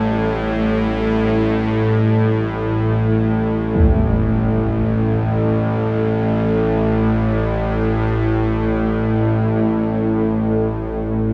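In free time, this desolate, unsettling dark ambient drone excerpt rests on a single Gsus2/A harmony. A tense, string-like, detuned bowed drone with vibrato sits up front between A1 and A2, while a barely audible, dry quartz singing bowl rings bright and pure with slow beating. A huge, dark, low-pass-filtered impact strikes in the background at 3.7 seconds, and the mix is set in a wet cathedral reverb over a small room ambience.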